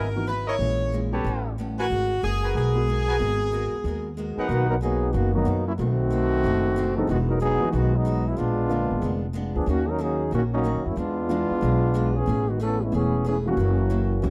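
This brassy, sultry big band swing cut at 185 BPM opens in G# minor with a bright, tight saxophone section carrying the melody over trumpet section stabs, a thumpy pizzicato upright bass, a boxy picked acoustic guitar with old strings, and a grand piano sitting in the background. At 4.5 s the key moves to B major and a clear, smooth-topped trombone section takes a solo for the rest of the passage, while guitar and bass continue beneath it and the piano drops out before returning at 11.3 s. The sound is a dry, close 1970s-style studio recording, with the saxophones, trombones and bass up front.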